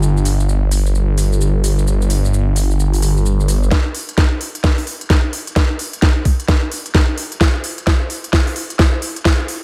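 A dry, up-front mix opens this bouncy, swaggering bass house fragment, where a thick, swirling saw bass, detuned and saturated with phaser, overdrive and sidechain pumping, rides a swung garage kit of crisp hats, shaker and a cracking snare with a tape-warm, large-room character. At 3.7 seconds the bass drops away and an overdriven, knocking electronic kick takes over as the drums launch into a fill-driven build-up. The build-up carries through to the cut at 9.6 seconds.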